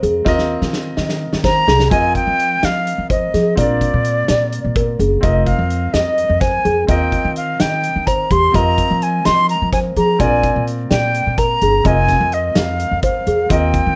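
A drum fill from a loose indie kit, distant and roomy with a punchy kick, opens this brooding, intricate progressive instrumental cut from a longer piece, while a bright concert grand piano, a small celesta and an upright bass sound from the very start. Set in F dorian and moving in a straight 7/8 at 254 BPM counted in eighths, the music circles through Fm7, Bb7 and Eb6 once the main section arrives at 1.9 seconds. The woody, thumpy pizzicato bass anchors the low end, the brilliant piano supplies accompaniment, and the bell-like celesta spins delicate arpeggios touched with a slapback echo. At 1.4 seconds a silver concert flute enters up front with the melody, its airy, tongued tone carrying an unsteady vibrato. A light reverb gives the ensemble a natural sense of space.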